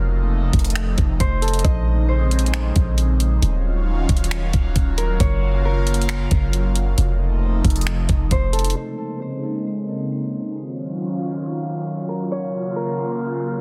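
A half-time groove of knocking kick, metallic hats, finger snaps and a softly clipped snare from an up-front electronic R&B kit rides over a deep, boomy 808-style bass in this spacious, melancholic cloud-rap fragment, while a breathy, detuned pad with chorus, phaser and sidechain pumping holds sustained chords and a ringing, thumb-plucked Celtic harp carries the delayed melody, until the bass drops out at 8.7 seconds and the drums at 8.8 seconds, leaving a filter sweep over harp and pad to the close at 13.6 seconds.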